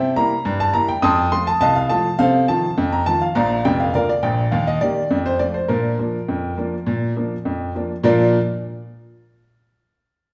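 In a straight two-beat feel, this lively, jaunty ragtime fragment, cut from a longer piece, features a solo upright piano, woody and boxy with audible action noise, sitting up front and intimate in a wet, large studio reverb as it runs through C7 and F7 changes to settle on Bb before stopping at 8.4 seconds.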